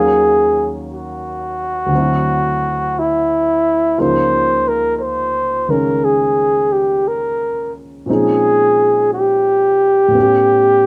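A breathy flugelhorn and a grand piano open together on this melancholic, smoky jazz ballad fragment, moving at a slow 58 BPM in 4/4 with a gentle swing on the eighth notes. Up front, the flugelhorn carries the melody in a mellow, whispered tone, with soft attacks, scooped notes and vibrato. Beneath it, the warm, intimate, natural-sounding piano accompanies through extended chords from Ebm9 to A9, its action noise audible, all inside a light reverb.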